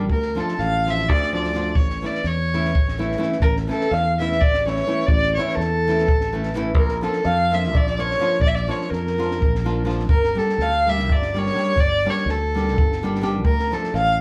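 In 7/8, this bittersweet, restless Balkan wedding-band piece sets a rich, smooth bowed fiddle up front over fingerpicked classical nylon-string guitar, growly amped electric bass and a dark, punchy compact cocktail drum kit, with a round, horn-like sawtooth synth lead with filter sweep, chorus and vibrato entering as a second line at 3.5 s, the band heard live together in a moderately reverberant large studio.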